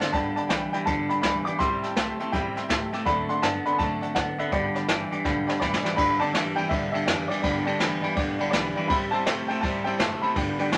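Swung eighth notes drive this rollicking, retro rockabilly cut in 4/4, led by an up-front jazz kit played with brushes, whose dark cymbals and boomy kick give way to a fill from 5.3 to 6.0 seconds that leads into the second section. A woody upright piano carries the boxy, short-sustained melody over a bright, twangy electric guitar riff, while a jangly, metallic tack piano adds percussive vintage sparkle. Underneath, a full-bodied picked acoustic guitar and a thumpy pizzicato upright bass sit very quiet in a mix set in moderate studio reverb.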